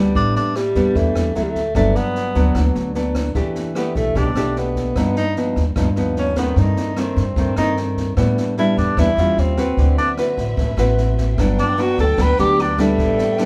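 A straight 4/4 bossa nova groove at 150 BPM in G major rides on an open jazz kit of boomy kick, rim click and snare sitting a little behind the band, with a woody, growly pizzicato upright bass and a fingerpicked nylon-string guitar up front, its finger squeaks audible as it moves through chords like A9sus4, Gmaj7, Gaug7 and Eb9. A mellow, breathy tenor saxophone with light vibrato and scooped notes carries the melody and takes a solo from 3.4 seconds, while a lush bowed string section enters softly in the background at 9.8 seconds. The relaxed, sophisticated excerpt sounds like a band playing live together in one room under light reverb.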